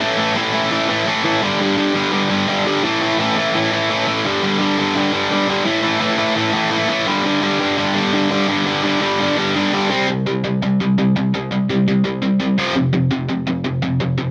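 A straight 4/4 punk pulse at 170 BPM drives this angry, aggressive fragment cut from a longer piece, where a lone bright, overdriven, picked electric guitar, double-tracked and up front with light reverb, ranges from F2 to C4 as it alternates A5 and G5 before a brief passage leads to C5 at 9.9 seconds and F5 at 12.6 seconds, all tuned to A4 = 441 Hz in a dense, heavily limited modern master.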